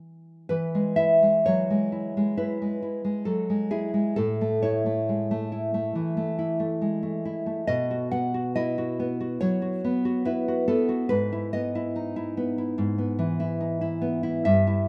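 A dark, full-bodied nylon-string guitar carries this romantic classical piece alone, fingerpicked and placed up front across the whole 14.9 seconds, which are cut from a longer work. The mood is wistful and passionate, with a rubato feel in 4/4 moving at a tempo of about 64 to 73 BPM. In E major, the harmony opens on a brief E minor before settling on E at 0.5 seconds, then moves through A, B, and E over G sharp. The guitar ranges from G2 up to F#5. A moderate recital hall reverb with a 1.3-second decay gives the intimate performance a natural sense of space.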